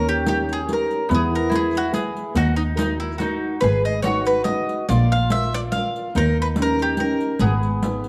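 A bright, picked bowl-back mandolin carries the melody up front in this sunny, lively Italian folk serenade excerpt in a swung three-four, joined by a woody second mandolin on a second line, a small, thumb-plucked nylon-string guitar accompaniment, a rich bowed double bass with smooth vibrato, and a riq whose dark, saturated jingles enter at 0.3 s, all wrapped in a warm, reverberant recital-hall sound.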